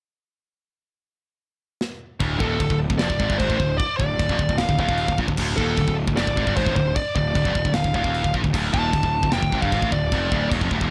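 Heavy metal at 152 BPM in straight 4/4, this heavy, aggressive excerpt is cut from a longer piece and sits in D phrygian over a D minor chord once the band arrives. A tight acoustic drum kit opens with a fill at 1.8 seconds, its medium-tuned snare, tight kick, china and crash cymbals sounding mid-forward and up front with a rolled-off top. At 2.2 seconds two bright, high-gain picked guitars, one of them scooped, lay down a low riff from D2 to Bb2 in the background, joined by a growly, fuzz-laden overdriven bass played direct and amped in the depths from D1 to Bb1. A dark, distorted lead guitar carries the melody up front between A4 and A5, entering at 2.4 seconds. The whole thing sits in a small room ambience.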